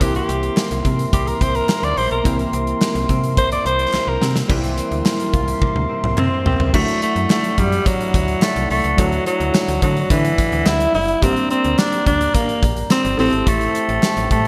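Urgent and nostalgic, this 1980s-style pop passage puts a raspy, gritty alto saxophone up front with a forceful solo full of scooped notes, riding over a gated drum kit with bright cymbals and a tight kick. A snappy FM bass with a metallic attack, glassy digital keys treated with chorus and phaser, a mellow brass ensemble holding sustained chords, and a very quiet, crisp group handclap fill out the arrangement. A clean, direct-recorded electric guitar plays a riff drenched in lush chorus and delay until 7.3 seconds, with drum fills marking the turns into new sections, all under bright 1980s-style digital production.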